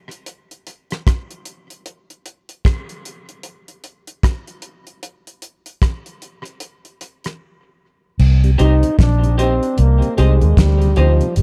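Dub reggae at 76 BPM in C minor with a swung 16th-note feel, hypnotic and meditative, cut from a longer piece that opens on a drum break: a damped, dry 70s kit with dark cymbals, fat snare, tight kick, hi-hat, rim clicks and crash plays alone until 8.2 seconds. A foam-muted, round electric bass then arrives up front on a C minor chord, joined moments later by a very quiet tonewheel organ through a slow rotary speaker, a breathy, whispered trombone melody with vibrato and tape echo, a slightly broken-up picked guitar with lush chorus and echo, and woody, slightly detuned upright piano stabs with audible action noise in the background. The echo-heavy mix sits in a small room ambience.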